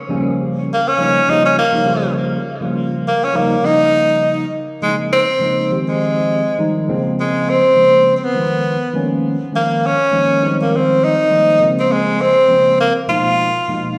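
A swung 4/4 groove carries this funky, bright jazz cut, taken from a longer piece. A clean tine electric piano with ensemble chorus comps up front from 0.1 seconds, while a bright, close-miked tenor saxophone enters at 0.7 seconds to solo on top, its scooped notes and vibrato thrown back by slapback and tape echo. The chords drift through lush ninth and minor-sixth colours, and the whole performance sounds like a live gig heard through the venue's PA, bathed in recital hall reverb and a moderate plate.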